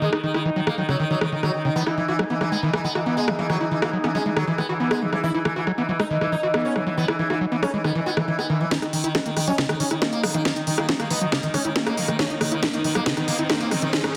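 An overdriven techno kit drives this psychedelic trance excerpt in straight 4/4 at 138 BPM, with a cracking snare and smooth hats up front, until a heavy, layered electronic kick arrives at 8.7 s to power a build-up and drum fill, joined by a background riser from 10.9 s. Over an alien, driving Eb phrygian harmony that shifts between Eb and E, a buzzing, plectrum-plucked sitar carries the melody through phaser and tape echo, while a screaming, squelchy sawtooth acid riff snarls with resonant filter sweeps, distortion and chorus. A dark, warbling wavetable pad morphs in the background and a very quiet metallic FM wobble bass surfaces briefly twice, with sidechain pumping on the sitar, pad and acid line and a moderate room reverb on a dense, heavily limited master.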